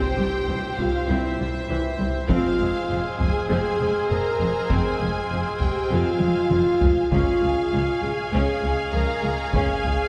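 Heard from further back in a wet scoring stage with a 1.6-second reverb, this dark, dramatic cinematic orchestral excerpt in F minor moves at 99 BPM in a straight 4/4, its harmony shifting from C to Fm at 2.3 seconds and to Db at 7.1 seconds. A smooth, lush violin section carries the melody over a second violin line and a focused, close viola accompaniment, while a soft-attack French horn section, distant and roomy, lays down dark sustained chords and a distant woodwind section adds gently vibrato-touched chords. Cellos and woody double basses hold the bass from 0.2 seconds, and a close, dry taiko ensemble played with heavy sticks enters at 0.8 seconds and breaks into a fill at 6.2 seconds.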